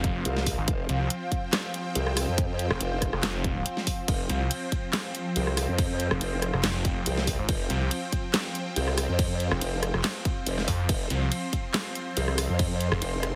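Heavily compressed and radio-like with a light reverb, this menacing, chaotic slice of heavy wobble dubstep is cut from a longer piece and runs at 141 BPM in 4/4, with a half-time feel and a slight swing on the sixteenths, tuned to A4 = 445 Hz. Two basses sit up front in the F1 to F2 range. A snarling, distorted saw bass growls with detuned unison sawtooth layers and a moving notch, while a formant-sweep wobble bass, entering at 0.3 seconds, adds a pulse-wave wobble coloured by chorus and overdrive. A punchy, tape-warm electronic kick sits up front beside a layered dubstep kit, which was re-recorded in a small room and has a huge snare along with crash cymbal, handclaps, hi-hat and rim clicks. Above them, a lush, full-bodied supersaw pad holds sustained chords between F3 and C6, treated with phaser and sidechain pumping. Deep in the background, a dark, moody ambient pad with a sub octave and chorus sustains F5 throughout the whole 13.4-second section, its own reverb and sidechain pumping giving the mix a brooding haze.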